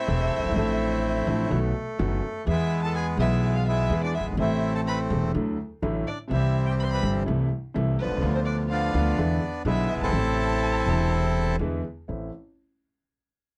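A reedy, dark bandoneon opens this sultry, melancholic tango fragment with the melody, together with a single bowed violin on a distant, expressive second line full of vibrato and portamento. A vintage-sounding concert grand piano with deep bass and audible action noise sits up front in the accompaniment, while a thumpy, woody upright bass on gut strings plays pizzicato beneath the rubato minor-key harmony. The bandoneon and violin drop out at 11.6 seconds, leaving piano and bass to carry on briefly in this dry, close 1970s-style studio sound.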